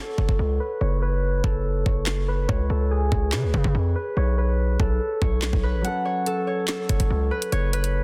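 A half-time drill groove at 143 BPM in 4/4 drives this menacing, tense hip hop excerpt in F# minor, cut from a longer piece. A produced electronic drum kit sits up front with a knocking kick, woody snare, bright hi-hats and handclaps, all roughened by overdrive. Beneath it, a distorted 808-style bass hits hard and heavy: a saturated sine tone with a noise layer, a fast attack and a decaying tail. The fingerpicked concert harp carries the melody from the first moment, its ringing, acoustic tone softened by a low-pass filter and trailed by digital delay. The opening stretch plays as a break under a filter sweep, moving through F#m, C#5 and Aadd9. At 5.8 seconds the harmony returns to F#m, and a dark, mellow baby grand piano enters with a smooth, vintage long sustain while the kick drops out until 6.7 seconds, all inside studio reverb and a dense, heavily limited modern master.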